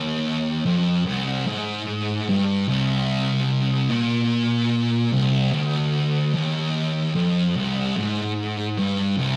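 A rough rehearsal-room recording with warm saturation and a moderate stone-room reverb frames this ominous, sludgy metal fragment, cut from a longer piece, in which a thick, double-tracked fuzz guitar plays alone and up front for 9.4 seconds, its distorted, picked low notes sitting between C2 and Bb2.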